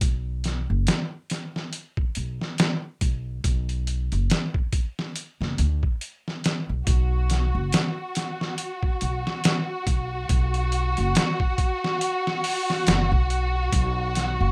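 Pizzicato upright bass and a sampler-style drum kit open this smoky, brooding trip hop excerpt, cut from a longer piece. The bass is woody and acoustic, with steel strings, while the pitched-down, compressed kit brings a thumpy kick, a medium-tuned snare and hi-hat, all with a gritty, tape-warm character; both sit up front. The groove moves at a slow 70 BPM in 4/4 with a light swing on the sixteenths. At 6.9 s a bowed studio string section enters on sustained chords, lush and expressive, with vibrato, portamento and a smooth top, though roughened by vintage 12-bit sampler grit. The mix is dry and close, with the feel of a rough home demo.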